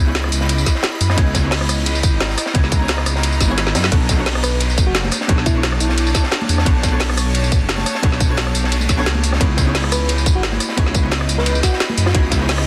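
A dense, heavily limited modern mix with light reverb and a touch of studio ambience opens this soulful, dreamy slice of liquid drum and bass, moving at 175 BPM in a straight 4/4 over C#m7 and Bm7 chords. Up front, a deep, rumbling detuned saw bass with a beating, saturated edge anchors the low end, while a tight, layered electronic kick enters at 0.7 seconds and sits loudest of all. Two drum kits drive the groove: a produced kit with a woody snare, metallic hats, rim clicks, ride and tambourine sits forward, and a crunchy, gritty breakbeat kit with dark cymbals, a high-tuned snare and a rolled-off, high-pass-filtered top rides behind it, with a drum fill at 3.6 seconds. In the background, a clean, compressed hollow-body jazz guitar plays accompaniment through delay, and an ethereal pad with octave-up shimmer, chorus, built-in reverb and sidechain pumping holds sustained chords. A bell-like, sparkling FM electric piano with chorus, tremolo and delay adds brief melodic phrases starting at 4.4 seconds, and vintage, band-limited congas with hard hands join at 5.0 seconds.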